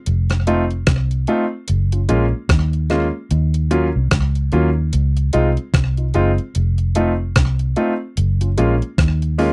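Lovers rock reggae with a sweet, tender mood, moving at an unhurried pace with a swung sixteenth-note feel. A vintage muted fingered electric bass anchors the low end from 0.1 seconds, its tone dark, round and foam-muted, sitting up front. Alongside it, a gated 80s digital drum machine plays hi-hat, kick drum and rim click, with a thumpy, sampler-style character, overdrive and a slapback echo, sounding as if re-recorded in a large room. A warm concert grand piano joins at 0.5 seconds as accompaniment, intimate and natural, with audible action noise, deep bass and long sustain. The harmony cycles through F7, Gbmaj7, Ebm7 and Dbmaj7 before returning to F7 and Gbmaj7, all captured in a dry, close 1970s-style studio sound, and the clip is cut from a longer piece.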